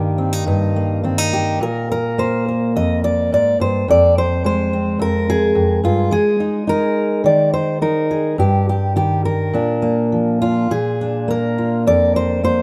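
Folk solo fingerstyle guitar in a loose, rubato feel with a warm, nostalgic mood, this short cut from a longer piece features a bright, full-bodied jumbo steel-string acoustic fingerpicked up front, with audible finger squeak, moving through chords like Eb/G, Fm and Absus2 before settling on Bb, all set in light reverb and small-room ambience with the rough character of a home demo.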